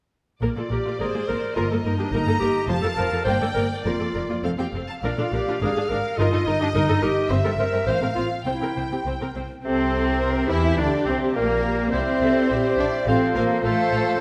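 Lively and spirited, this quick classical-period orchestral passage in 2/4 at 105 BPM moves with a rubato feel from Bb major toward F major, as rich, vibrato-laden chamber strings (a background violin melody, a second violin line, violas, cellos and double basses) play from the opening beside a bright, soft-attacked solo clarinet, before a clear oboe, an airy, very quiet flute ensemble, a distant bassoon and mellow, hushed French horns join around 9.7 seconds, all set in a wet scoring-stage reverb.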